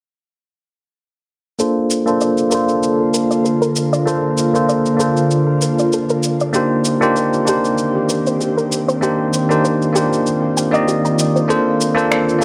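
At 1.6 seconds a bright, bell-like tine electric piano enters up front with a filter sweep, delay and shimmer reverb, joined by very quiet, dark, warbling pluck arpeggios and gritty, overdriven electronic cabasa and finger snaps. An ethereal, airy pad with detuned ensemble chorus and a slow attack comes in at 2.8 seconds. This smooth, sunny sunset chillout fragment in Bb major, tuned to A4 = 436 Hz, moves at 97 BPM with a light 16th-note swing, its chords passing from Bbmaj7 to Cm7 and back under a moderate plate reverb.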